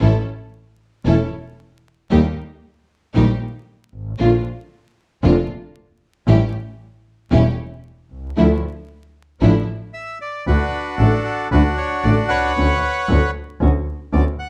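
A warm, thumb-plucked nylon-string guitar, a smooth, focused bowed double bass up front and a quieter studio string section playing clear stabs open this elegant, nostalgic tango fragment with a rubato feel, and after the strings drop out at 9.6 s a reedy, bright, close-miked bandoneon takes the melody from 9.9 s, set within a dark production with light reverb and vinyl crackle.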